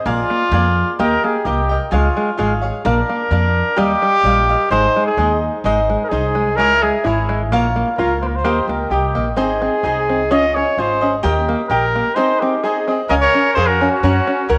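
A crisp, picked cavaquinho opens this short mariachi-style Mexican folk passage in Ab major at 129 BPM in 2/4, joined almost at once by a woody pizzicato upright bass, a plunky fingerpicked open-back banjo playing arpeggios, and an up-front, punchy trumpet with a roomy, distant tone carrying a romantic, proud melody in classical style. Chords move through harmonies such as Bb7, Dbm and Dbadd9, and at 13.1 s a clear trumpet with light vibrato and a smooth top adds a second line over Db6 and Gb. A moderate plate reverb surrounds the ensemble.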